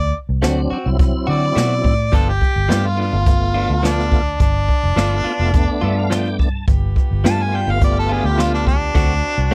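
An up-front, overdriven harmonica with scooped notes and light vibrato carries the melody over a round, foam-muted fingered bass, a slow-rotary tonewheel organ with a fill at 5.5 seconds, clean direct-recorded guitar stabs and a brushed drum kit with a boomy kick, while a soft-attack horn section sustains chords in the background from 6.7 seconds, giving this short cut of swaggering, gritty straight-eighth soul blues at 106 BPM over D7 and G7 its dry, close 1970s studio sound.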